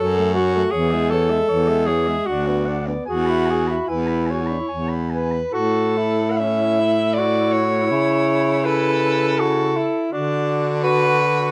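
Bathed in light reverb, this short excerpt of a lyrical, classical saxophone quartet sways in a rubato triple metre, with a mellow, vibrato-tinged soprano saxophone singing the melody from a distance, a clear alto saxophone shaping a second line, a roomy tenor saxophone with vibrato filling in the accompaniment, and a warm baritone saxophone sitting up front on the bass, all four playing throughout the 11.5 seconds as the harmony moves from F#m toward a closing D chord.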